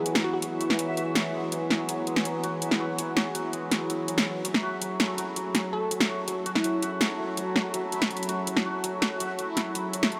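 A half-time groove at 164 BPM drives this heavy, spacious drum and bass piece in F# minor, where an up-front, overdriven electronic kit with a cracking snare and bright hats sits over a dark, detuned analog pad, shimmering hammered santur arpeggios through a low-pass filter and digital delay, a reversed, granular swelling texture in the background, and a glassy wavetable pluck that appears at 0.0 seconds and again at 5.7 seconds, the mix bathed in a huge ambient reverb as the chords move from E to F#madd9.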